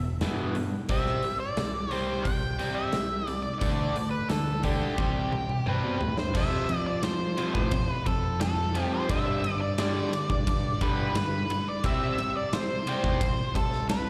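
Heard through a live venue's PA with a light recital-hall reverb, this confident, swaggering classic rock excerpt moves at 88 BPM in a straight 4/4, shifting from Em and C toward F, G5 and C as it changes sections at 6.4 seconds. A double-tracked, picked overdriven guitar with slapback echo carries the riff over a bright, growling fingered bass with overdrive, while a huge acoustic arena kit with punchy kick, bright cymbals and a pumping room sits up front and rolls through a drum fill from 5.0 to 6.4 seconds. From 0.9 seconds, a dark octave-fuzz lead guitar, also up front and colored by distortion, slapback echo and analog delay, sings the melody high above.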